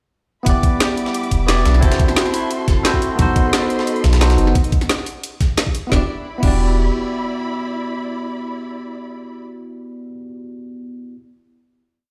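A rolling two-step drum and bass groove at 176 BPM in E minor drives this short, lush and soulful liquid piece, built from a knocking, overdriven electronic kick, a layered kit with a woody snare and bright hats, and a gritty, compressed breakbeat loop in the background, over a deep, round sine sub bass playing a dub-style line. Up front, a bell-like tine electric piano holds rootless chords with syncopated pushes through phaser and tape echo. Meanwhile, a studio string section adds a bowed pad with vibrato and portamento, roughened by vintage 12-bit sampler grit and sidechain pumping, and a dark, very quiet clean electric guitar picks a 16-step arpeggiated sequence; the drop runs from 0.5 to 5.9 seconds, then a final Em7 chord sounds in a stone room reverb, with the electric piano lingering until 11.2 seconds.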